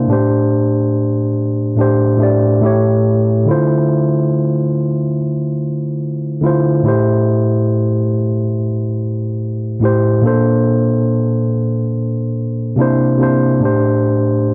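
Worn, warbling cassette tape colors this short hip hop excerpt, its pitch drifting gently under a moderate studio reverb. A lone tine electric piano carries the whole passage from 0.0 to 14.5 seconds, mellow and clean, sitting direct and up front across a range from A2 to D5. The tempo is a slow 71 BPM in 4/4, with a lazy swing on the sixteenths that gives the phrase a relaxed feel. The harmony opens on Amadd11, passes through A7, Dm7 and Am7, then lifts to Bbmaj7 and C7 before settling back on Amadd11 at 13.6 seconds. The mood is hazy and reflective, like a faded memory.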